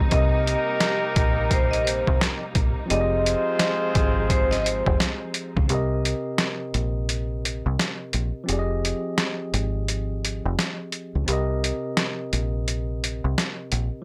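Boom-bap hip-hop at 86 BPM in 4/4, with a 62% 16th-note swing and a moody, gritty feel, cut from a longer piece. A pitched-down, sampler-style drum kit sits up front with a thumpy kick, a medium-tuned snare and hi-hat, compressed and overdriven, while a deep, round fingered electric bass, foam-muted and punchy, holds the low end. A clean tine electric piano with a cassette-tape color carries the accompaniment throughout, over chords moving between Cm7 and Fm7. In the opening stretch, a bright, ringing vibraphone with fast motor vibrato plays the melody, a mellow trumpet section adds soft-attack stabs with tape echo, and a lush bowed string section holds sustained chords in the background until 5.7 seconds. From there the piece drops into a break carried by drums, bass and electric piano, all heard in a dry, gritty hardware recording with little reverb.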